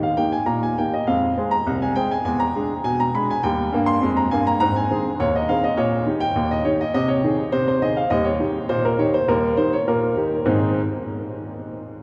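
Bathed in a long, wet cathedral reverb, this lively, cheerful ragtime fragment in Ab major at 102 BPM in a straight 2/4 features a clear, woody upright piano with a smooth, vintage tone and long sustain, played solo and up front from C2 to C6 until 10.8 s, moving through chords like Eb, Fm and E7 before shifting to a new section on Ab at 10.5 s.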